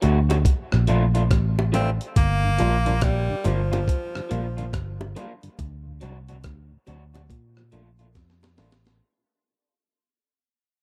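A swung 16th-note roots reggae groove at 70 BPM in G minor, fading throughout this cut from a longer piece, rides on a gritty, pitched-up breakbeat kit with a thumpy kick and a round, foam-muted picked bass up front, as tight high-tuned bongos and a slightly broken-up lo-fi guitar with vibrato and dub echo sit beneath an edgy tenor saxophone solo entering at 1.7 s, while a mellow tonewheel organ with chorus vibrato and slow rotary speaker joins in the background at 2.4 s over Bbmaj7, Gm7 and D7 chords, before a drum fill at 8.2 s closes this serious, meditative piece in its dark digital ambience.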